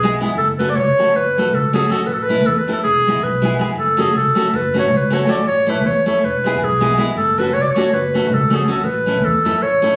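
Driven by a straight 9/8 pulse counted in eighths at 318 BPM, this short excerpt from a longer Balkan folk piece has the festive, wild energy of a wedding band, tuned to A4 = 442 Hz. A clarinet in classical style carries the melody as the solo voice, sitting up front with a warm tone between G#4 and D5. A fingerpicked nylon-string guitar, also up front, supplies full-bodied, deep classical accompaniment with the warm sound of fresh strings and an audible finger squeak, cycling through F#m, A and E. Beneath them, an upright bass plays pizzicato on steel strings, its woody, growly low end ranging from E1 to E2. All three play together from the start to about 10.0 seconds, heard through moderate studio reverb in a recording captured on a phone in the room.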